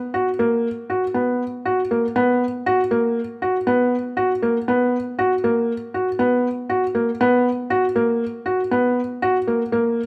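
In a straight 5/4 at 119 BPM, this contemporary instrumental excerpt cut from a longer piece has a shimmering, playful mood, carried from 0.1 to 10.0 seconds by a solo felt-muted upright piano tuned to A4 = 439 Hz, heard up front with a soft, intimate, mellow tone and audible action noise, all set in a moderate recital hall reverb.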